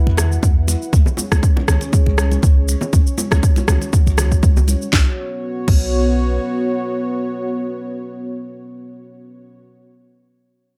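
A dark, detuned analog pad with chorus and sidechain pumping opens this hypnotic afro house excerpt at 120 BPM, soon joined by a boomy, pumping 808-style bass under a filter sweep, a punchy overdriven electronic kick up front, an overdriven house kit with a cracking snare, rim click, shaker and crash, and hard-handed congas and soft, low-tuned bongos in the background, before the drums fall away by 5.8 seconds, the bass by 6.4 seconds, and the moody pad sustains alone until 9.6 seconds.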